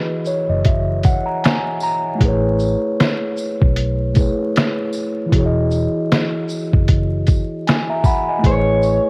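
Hazy with vinyl crackle and cassette softness, this cosy, nostalgic lo-fi hip hop fragment sways at 77 BPM with a swung feel, as a mellow, up-front tine electric piano carries Emaj9 and Amaj9 chords with fills, a muffled, pitched-down sampler drum kit with thumpy kick, snaps and shaker sits on a round, foam-muted bass, a jingly tambourine lingers in the background, and a dark, slightly broken-up electric guitar with tape echo flickers briefly at the very start and slips back in near 8.5 seconds.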